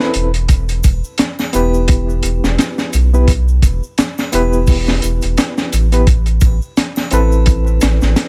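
Trip hop at 86 BPM in E minor, brooding and cinematic, this short cut from a longer piece sets a crunchy, gritty breakbeat kit with a punchy kick and high-tuned snare up front beside a round, deep analog bass with tube saturation, while a barky, reedy electric piano with fast tremolo, low-pass filter and tape echo accompanies quietly over Em moving to Amadd9 at 6.1 seconds, a close, dry tube shaker and triangle sit in the background, and vinyl crackle colours the dry mix.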